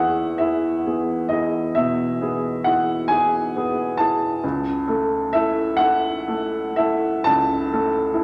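Bathed in a wet recital-hall reverb with a 1.7-second decay, this brief fragment of a serene, dreamy romantic nocturne features a solo baby grand piano, up front, open and long-sustaining, spanning C#2 to A5 in E major at a slow, rubato 39-48 BPM in 12/8, resting on an E chord before moving to A over C# at 4.4 seconds.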